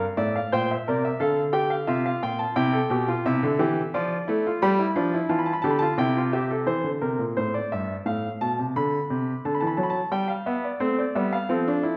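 In a straight three-beat metre, this short excerpt from a longer baroque-style fugue unfolds at a measured, unhurried pace, its serious and contemplative mood suited to a classical setting. A single baby grand piano carries all three contrapuntal voices alone from 0.0 to 12.0 seconds, spanning a range from G2 to B5 and tuned slightly low to A4 = 435 Hz. The instrument has a warm, natural tone and sits up front, while a wet recital hall reverb with a 1.5-second decay gives the sound a sense of space. The harmony moves from an opening with unharmonized lines through C7/Bb, F/C and Dm/F toward G7, settling on C around 6.0 seconds. A second section begins at 6.7 seconds, passing through C7, F/A, D7 and G before closing on F.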